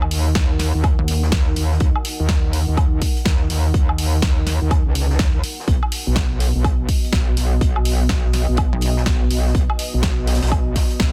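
Bass house at 124 BPM in Eb minor, gritty and bouncy, with a 62% swing on the sixteenths, cut from a longer piece. Up front, a metallic wobble bass carries the low end with an aggressive, saturated FM growl thickened by chorus and overdrive and pumped by sidechain. A heavier, detuned pluck wobble bass pulses in only briefly, at 1.0 and again at 8.7 seconds. A punchy electronic kick enters at 0.4 seconds and sits forward, while a layered house kit adds hi-hat, a punchy snare and woodblock, and a very quiet acoustic kit with a high-tuned snare and rolled-off top tucks underneath. In the background, a deep, moody pad holds sustained chords on sawtooth and sine layers with a sub octave, slow attack and long release, its built-in reverb and sidechain pumping shading a shift from Ebm to B at 5.7 seconds. The mix is dry, dense and heavily limited.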